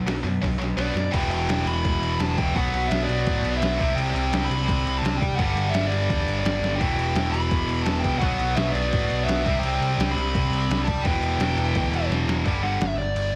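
Angry and raw, this short punk rock excerpt charges along at 169 BPM in E minor, with a tight, double-tracked distorted guitar riff up front, a growly, punchy overdriven bass, and a muffled, pitched-down sampler-style drum kit with a thumpy kick that fills at 0.4, 6.6 and 12.1 seconds, while a dark, smooth overdriven lead guitar carries the melody from 0.8 seconds over chords moving through Em, Bm, C5 and G5, all in a dry, heavily compressed radio sound.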